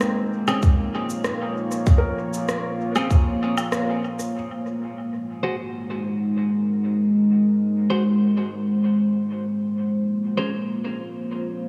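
Ambient dub at 97 BPM in 4/4, deep and hazy, built on a dark, warbling, detuned pad that holds sustained chords moving from Bbmadd9 to Ab and back. Over the first few seconds, a soft, felt-muted upright piano with audible action noise plays echoing arpeggios in the background. A tight, up-front electronic kick joins electronic rim click, shaker and woodblock during those opening seconds. Clean, compressed electric guitar stabs, drenched in spring reverb and dub echo, carry on until 10.5 s inside a huge, wet reverb.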